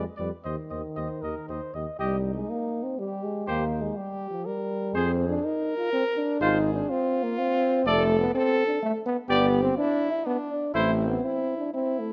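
In a rubato 3/4 at 123 BPM in C minor, this stately classical brass quintet excerpt sets a vintage-toned trumpet melody over a smooth-topped flugelhorn second line, with a clear, lightly vibrato-touched French horn and a mellow euphonium sitting up front in the accompaniment and a soft-attacked bass trombone anchoring the bass, all captured by close, detailed microphones in light reverb as chords move from Cm through Fm and G5 to Am, the trumpet and flugelhorn stopping at 10.9 seconds while the horn and euphonium carry on to 12.1 seconds.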